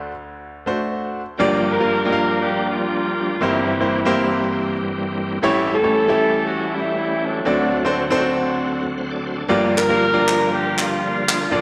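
A brilliant baby grand piano opens this uptempo gospel fragment alone, its short-sustained accompaniment carrying audible action noise, before a shouting tonewheel organ joins at 1.4 seconds with key click, light overdrive, chorus vibrato and a slow rotary speaker. A dark, vintage horn section carries the tight, up-front melody with light vibrato over a swung 118 BPM groove in G minor, moving through Gm7, C7/G, A7 and D7 with a solemn, fervent character. Crisp human handclaps arrive near the end at 9.8 seconds, and a wet scoring-stage reverb surrounds the ensemble.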